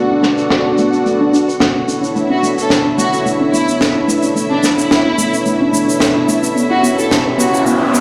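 Groovy and cosmic, this short nu-disco passage cut from a longer piece moves at 109 BPM in 4/4 with a light 16th-note swing, centred in B minor. A smooth, mellow analog pad built from sawtooth and triangle tones with a sub octave sits up front with a slow attack and long release, treated with chorus and delay, while a lush bowed symphonic string section holds sustained chords beneath a low-pass filter. Tucked in the background, a soft, round, detuned pluck with a warbling vintage character plays dark arpeggios through chorus and dub echo, and a filter sweep runs across it for the whole passage. An acoustic snare drum and shaker with a high-tuned, natural small-room sound drive the groove up front, and from 2.3 s an expressive, close studio violin section carries the melody with vibrato, portamento and dub echo. The harmony moves from Bm11 to C#m7b5 at 6.6 s, and an electronic riser enters in the background at 6.9 s, all set in a moderate plate reverb and large studio ambience that suggests a big sound system filling a bare room.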